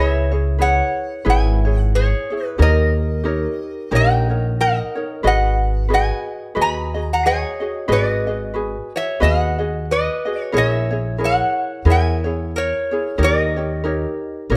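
Hawaiian excerpt at 91 BPM in G# minor with swung eighths, dreamy and sunny, where a bright, nasal metal-body resonator slide guitar played with fingerpicks carries the melody over a light fingerpicked ukulele and a woody pizzicato upright bass on steel strings, all three close and up front in light reverb as the harmony moves from C#m7 through D#7 to G#m7.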